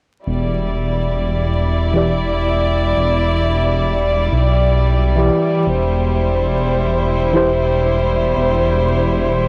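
Brooding and cinematic, this trip hop excerpt settles into a lightly swung groove with a hazy, homemade feel, its booth ambience dusted with vinyl crackle. A muted chamber violin section holds sustained chords up front, its con sordino tone dark and veiled, with gentle vibrato, soft bowed attacks and a smooth top, further softened by cassette tape and plate reverb. Beneath it, a detuned saw bass rumbles deep and dark, its beating, sustained notes hitting with a fast attack. At 1.9 seconds a tine electric piano enters as accompaniment, clean and warm-toned as if heard through built-in speakers, shaded by tremolo, a low-pass filter sweep, tape echo and plate reverb, before it stops at 7.5 seconds. The harmony rests on Em7 and then shifts to C/E at 5.7 seconds.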